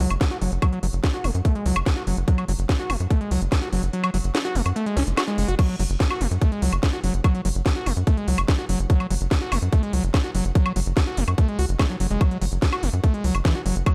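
Psychedelic trance at 145 BPM in F# minor, alien and hypnotic, cut from a longer piece, where a squelchy, gritty overdriven acid bass riff with distortion, sidechain pumping and digital delay carries a filter sweep over a tight, punchy sawtooth sequencer bass with tube saturation and a garage drum kit of cracking snare, crisp hats, crash and woodblock, while an up-front electronic kick enters at 0.2 seconds, drops out from 3.9 to 5.6 seconds and returns for the drop, all in a dark production with digital ambience.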